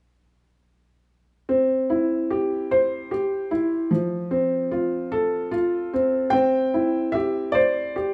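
A felt-muted upright piano sits up front with an intimate, boxy tone and audible action noise, carrying a gentle, innocent children's melody in C major at a slow 49 BPM in 6/8 from 1.5 s to 8.1 s over a C to F to C progression, set in a moderate studio reverb with a dull top end and a faint mains hum in this brief excerpt cut from a longer piece.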